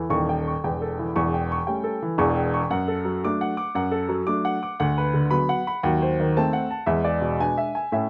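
Exuberant and swinging, this short stride piano excerpt in D major at 115 BPM features a solo upright piano with a woody, polished, up-front tone, ranging from Eb1 to D6 under light reverb in a rough home demo mix, moving through A7, D/F#, Bm/D, D#dim7 and E7 across its 8.1 seconds.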